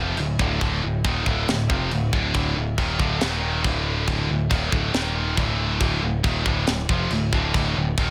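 A scooped, high-gain, double-tracked electric guitar sits up front and drives this relentless, epic heavy metal excerpt at 138 BPM, picking a distorted low riff over Dm, Eb5 and D5 chords, backed by a growling, overdriven picked bass and a tight studio drum kit with a high-tuned snare, tight kick and china cymbal entering at 0.2 seconds, all in a dry mix.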